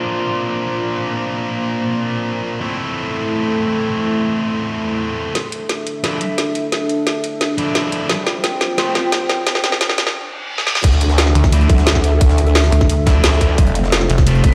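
A growling, formant-filtered bass with overdrive and chorus surges up front alongside a tight electronic kick at the 10.8-second drop of this dark, mechanical drum and bass excerpt, joined at 11.4 seconds by a pulsing, detuned wobble bass, after a moody, ring-modulated analog pad and stabbing fuzz guitar through tape echo set the stage, a layered kit with a woody snare and metallic hats builds from 5.4 seconds, and a background riser with reverse cymbal and a very quiet, gritty breakbeat kit sit within a lush hall reverb heard in a bare stone room.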